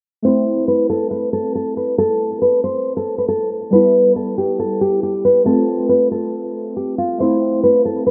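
A half-time 4/4 groove at 138 BPM sets this hard-hitting, menacing hip hop fragment in A minor, cut from a longer piece and moving through Am, Em and F before returning to Am. Up front, a full-bodied, fingerpicked nylon-string guitar carries the melody with fresh-string finger squeak and a touch of digital delay. Warbling, detuned lo-fi synth keys with a square-and-sawtooth edge, a fast attack, decaying notes and chorus supply nostalgic, mellow accompaniment beneath it, both playing from 0.2 to 8.1 seconds. A lush hall reverb and a filter sweep colour the rough home-demo mix, which is softened by a low-pass filter.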